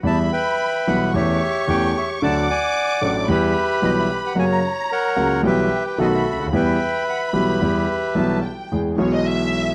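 A clear concert grand piano and a lush, vibrato-rich violin section open this tense, dramatic tango excerpt at 111 BPM in 4/4 with a rubato feel, and a reedy, bright bandoneon takes the melody up front from 0.1 seconds. The piano sits close and present, with deep bass, long sustain and audible action noise beneath chords moving from Em through A7/E, D, F# and B7. The bowed strings carry a second line from a distance with a slapback echo, also heard on the bandoneon, and then take a short expressive solo at 8.7 seconds over an E chord, all captured in a dry, close 1970s-style small room with a faint mains hum.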